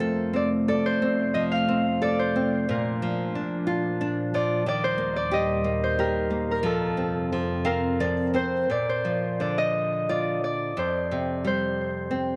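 A sleepy, tender lullaby in Bb major opens with a ringing Celtic harp melody carrying a touch of tape echo, set over fingerpicked classical nylon-string guitar with fresh, bright strings and a warbling, nostalgic tape-like pad holding sustained chords with chorus. The piece moves at 90 BPM in a gentle, rubato 3/4, with the harp and guitar up front and a moderate spring reverb softening the whole. The guitar adds a short fill at 7.3 seconds before the lo-fi pad drops out at 8.7 seconds, leaving harp and guitar to close on an unresolved Fsus2 chord.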